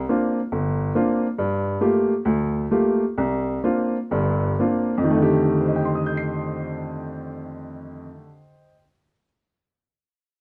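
A clear, woody upright piano opens on a C9sus4 chord, playing relaxed, swinging solo jazz in 4/4 in F mixolydian at 117-138 BPM, reaching from G1 up to C7. The tempo slows between 1.4 and 5.1 seconds as the harmony moves through Gm9 and back to C9sus4, before the next section settles onto F13 at 5.1 seconds. The piano sits up front in a moderate club reverb, and the recording carries lossy compression artefacts in this short excerpt cut from a longer performance.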